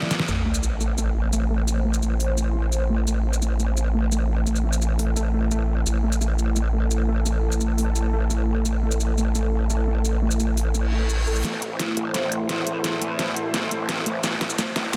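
A dense, heavily limited modern master with light reverb frames this tense, mechanical slice of dark technical drum and bass, cut from a longer piece. A growling, saturated bass sits up front, its aggressive, wobbling formant-filtered tone carrying chorus and tube saturation, while an electronic, layered drum kit drives with a deep, softly clipped snare, crisp filtered hats and shaker. Beneath them, a full-bodied, detuned sawtooth pad holds sustained chords with a slow attack and bright chorus shimmer, and a lo-fi, warbling pluck spins dark arpeggios through chorus and dub echo. A drum fill and band accent open the track, followed by an impact at 0.3 seconds, and very quiet sub drop, reverse cymbal and riser effects mark the start and the closing stretch. From 11.4 seconds a build-up takes over, with a fresh drum fill and a filter sweep on the arpeggiated pluck.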